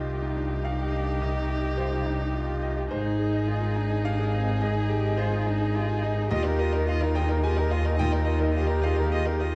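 A neoclassical piece for piano and strings opens with all five players sounding together, its longing, reflective mood set in C minor in a rubato 3/4 at about 106 BPM. A bright, brilliant concert grand piano carries the accompaniment across its whole span, from a deep, natural bass register up into its high notes. Above it, a single clear, focused violin sings the melody with vibrato, heard from a slight distance. A cello adds an expressive second line with vibrato and portamento, while a smooth, even viola sits in the background, and a bowed double bass stands close and up front with a warm, smooth tone and gentle vibrato. The harmony moves from C minor to A-flat at 2.9 seconds and settles on an open E-flat suspended chord at 6.3 seconds, all under light reverb in a dark, warm production, before this fragment of a longer work breaks off at 9.6 seconds.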